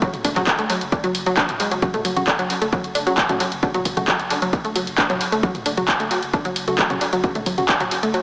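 A detuned sawtooth unison pluck riff leads this dark, intense excerpt of driving peak-time techno in F# minor at 133 BPM, pumping against a heavy, tape-warm layered kick and an up-front analog drum machine of handclaps, hi-hat, ride and toms, while crisp digital chord stabs and a thick, saturated sine sub bass sit in the background, all bathed in a wet spring reverb with echo-heavy delay and a small-speaker sound.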